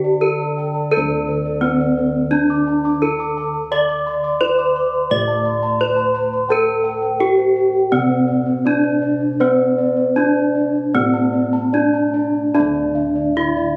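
In a straight 4/4 pulse at 73-86 BPM, this serene, ceremonial Javanese gamelan passage in D slendro, tuned to A4 = 441 Hz, is cut from a longer piece, and a shift to new material arrives at 12.5 s. Up front, a gamelan-type bronze metallophone struck with a horn mallet carries the melody with a brilliant, ringing tone and shimmering beats from its paired tuning, while bossed gongs add round, beating arpeggios. A second metallophone, played with padded disc mallets, sits in the background with mellow, airy arpeggios, and soft-toned bossed gongs under padded beaters supply the bass, all heard through a moderate recital-hall reverb captured on a phone in the room.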